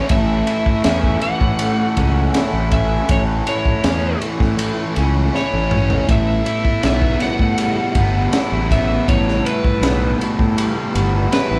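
This trippy, kaleidoscopic psychedelic rock excerpt opens on a bright, double-tracked fuzz guitar riff with distortion and phaser, a dark overdriven slide guitar melody and a very quiet, warbling vintage organ-string pad. Growly overdriven fingered bass joins at once, along with a gritty, crunchy breakbeat kit of tight kick, high-tuned snare, ride and toms, whose fill runs from 5.3 to 6.1 s just before the harmony moves from A to Em, as the band plays live in one room under moderate large studio reverb.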